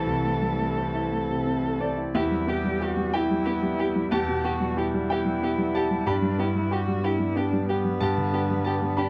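Fragile and reflective, this short neoclassical excerpt for piano and strings moves at a slow, rubato 61 BPM in 6/8, in E minor with tuning at A4 = 437 Hz. A concert grand sits up front with deep bass, intimate tone and audible action noise, while a single muted violin carries the melody and a muted cello adds a veiled second line, both bowed con sordino with vibrato and portamento. Beneath them a very quiet, detuned sawtooth pad holds sustained chords through Am/C, Em at 2.1 seconds and G at 6.1 seconds, and the whole is set in a dark, large studio reverb.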